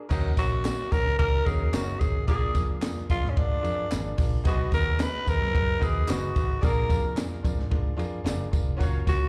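Driving and passionate, this uptempo 1960s-style soul excerpt in Eb minor moves at 110 BPM in a straight 4/4, cycling through Ebm7, Bb7, Abm7/Cb and Bb7 as if heard live through a club PA. A growling, raspy tenor saxophone carries the melody up front from 0.4 seconds, its breathy, scooped notes thrown back by slapback echo and analog delay. Beneath it, a concert grand piano with audible action noise and tube saturation provides accompaniment alongside a smooth, lightly vibrato horn section, while a dark, foam-muted picked electric bass, a compact cocktail kit with a high-tuned snare and tight kick, and close-miked egg shaker and group handclaps drive the groove.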